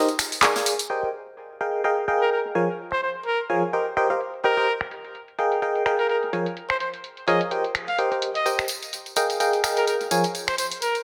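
A swung 127 BPM piano house groove in 4/4 rides on a punchy, tape-warm analog drum machine of finger snaps, handclaps and filtered hi-hat, with a polished acoustic kit in the background and a live-room tambourine that drops out at 0.9 s and returns at 8.5 s, while a filter sweep runs across the drums. Up front, a biting, warbling FM electric piano carries the riff with chorus, tremolo and tape echo through chords such as Cm7, Fm11, Db6/F and Eb6, and a warm, classical-style trumpet takes the melody from 2.2 s with its own tape echo. The mood is bittersweet and soulful, set in a small, wet room reverb, in a short section cut from a longer piece.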